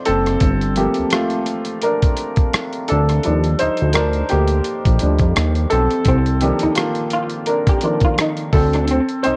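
R&B with a neo-soul lean, this excerpt from a longer piece carries an introspective, late-night mood and a gently swung 16th-note feel. A woody, slightly detuned upright piano takes the spotlight as a solo for the whole passage, moving through Gm11, Ebmaj9, Cm11 and D7(no3). Beneath it, a fat, sawtooth-based analog bass with a filter sweep sits up front alongside a gritty, compressed sampler-style drum kit of thumpy kick, hi-hat and rim click. At 6.1 seconds a dark, slightly broken-up electric guitar, played through a small old amp, joins as a second line, colored by ensemble chorus and slapback echo. The sound is dry, with worn, warbling cassette tape and drifting pitch giving the whole recording a hazy, vintage patina.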